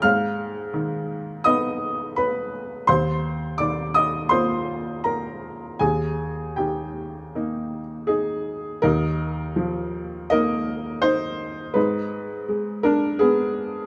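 A lone upright piano opens on an A-flat minor chord, setting a peaceful, tender mood for this short cut from a longer neoclassical minimalist piece in E-flat major. Its tone is clear and woody, slightly boxy, with a short sustain, and it sits up front in the sound. The playing moves in a gentle 4/4 at roughly 77-85 BPM, with a rubato feel that lets the time breathe. The harmony drifts from A-flat minor to E-flat suspended and then E-flat, and the opening phrase returns at 8.8 seconds, passing back through E-flat suspended to A-flat minor. A moderate plate reverb with a 3.3-second decay surrounds the piano, which ranges from low E-flat up to a high F across the 13.9 seconds.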